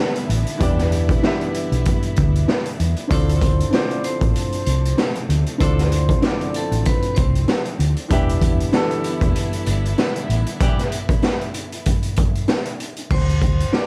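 Boom-bap hip-hop at 96 BPM in 4/4 with a lightly swung sixteenth feel, dark and gritty in mood, cut from a longer piece. A raw garage drum kit sits up front with a boomy kick, high-tuned snare, hi-hat and crash, its saturated, small-room sound rolled off at the top, while a round, amped hollow-body electric bass, fingered, anchors the low end alongside it. A dark grand piano carries the accompaniment through a tape-worn, filtered haze with audible action noise, over lush bowed strings holding sustained chords in the background and a mellow, distant horn section adding tight stabs with delay. At 3.1 seconds a hard-mallet vibraphone enters with a bright, ringing melody colored by slow motor vibrato and delay, returning briefly at 13.1 seconds, while very quiet jingly sleigh bells also come in at 3.1 seconds. The harmony moves from Em7 to Dm7, back to Em7 and lands on a D5, all wrapped in a steady bed of vinyl crackle.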